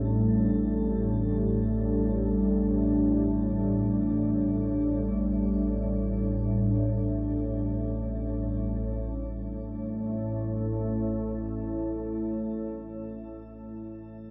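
Desolate and unsettling, this short ambient fragment, cut from a longer piece, drifts in free time with a dreamy, reverb-soaked haze and an enormous tail of about 8.8 seconds. A deep, dark pad sits up front, holding sustained chords from A2 to A4 with a detuned sawtooth body, a sub-octave weight, slow attacks and long releases, dressed in chorus and a shimmer reverb. Beneath it, a calm, nasal organ-like drone hums low from A1 to A2, its sine and triangle tones thickened by ensemble chorus. The harmony rests on G5/A before moving to A5 at 8.9 seconds, a subtle shift that keeps the mood hovering rather than resolving. Both parts hang in the cavernous space until the pad ends at 13.4 seconds, just after the drone.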